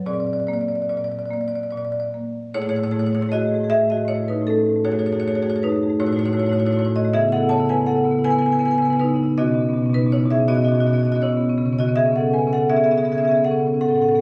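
A warm, up-front solo marimba played with medium-hard mallets carries this short cut from a contemporary classical piece, moving with a playful, flowing rubato in 6/8 across a range from F#2 to A5. After an opening Bb9, the harmony drifts through colorful chords such as Amaj7, F#madd9, C#m7 and Badd9, with the second section beginning at 2.5 seconds. Captured on a phone in the room, the sound is wrapped in a moderate recital-hall reverb.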